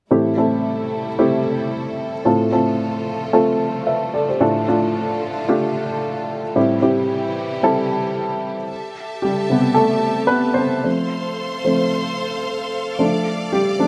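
Earnest and bittersweet, this swung pop passage in A minor at 112 BPM sets a worn, woody, slightly detuned upright piano up front as accompaniment, taking a solo from 8.7 s as the harmony moves from Am7 over an A bass toward F and Dm, while a lush, focused string section with bowed vibrato holds sustained chords lower in the mix, the sound framed by a moderate plate reverb.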